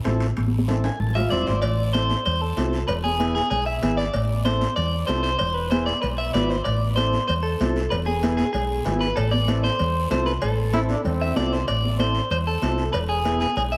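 A twangy, slightly broken-up electric guitar with spring reverb carries the melody from 1.2 seconds in this fiery, passionate cumbia excerpt at 191 BPM in A harmonic minor, over a dark, round hollow-body bass up front, a mellow overdriven combo organ with light vibrato, raspy close guiro, soft-handed high-tuned congas and ringing timbales and cowbell in the background, while a punchy trombone with vibrato adds a brief second line at 10.7 seconds, all set back in a roomy plate reverb.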